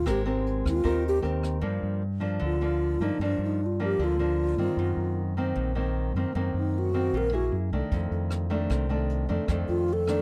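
A breathy, hollow alto flute with vibrato carries the melody of this breezy, relaxed bossa nova at 153 BPM, over thumb-plucked classical nylon-string guitar and a dark, round fingered electric bass, while a brushed jazz drum kit with a boomy kick and rim clicks plays from 0.1 to 1.5 seconds and returns at 7.9 seconds, all in a dry, close 1970s-style studio sound moving through chords such as Abmaj9, Gm7 and Ebm6 before settling on F6.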